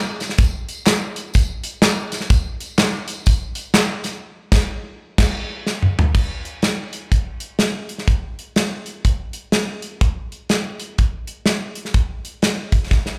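A swung 4/4 gospel groove, reverent yet jubilant and cut from a longer piece, rides on an airy, polished studio drum kit up front with bright cymbals, a medium-tuned snare and a tight kick, while a distant tube shaker and group handclaps with slapback echo join until 4.1 seconds, a band accent and drum fill lead into a new section at 6.1 seconds, and another fill lands at 12.9 seconds, all heard as a live gig through the venue's PA with club ambience.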